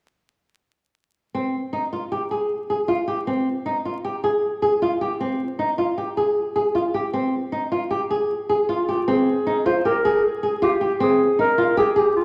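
A restless, shimmering contemporary instrumental in a straight 5/4 at 155 BPM, where a dark, fingerpicked flamenco guitar plays up-front arpeggios on an Abmaj13/C chord from 1.3 s, with audible finger squeak, and a mellow, vintage-toned clarinet joins at 8.7 s with a jazz-style solo melody of subtone, light vibrato and scooped notes, all set in a wet recital-hall reverb under vinyl crackle.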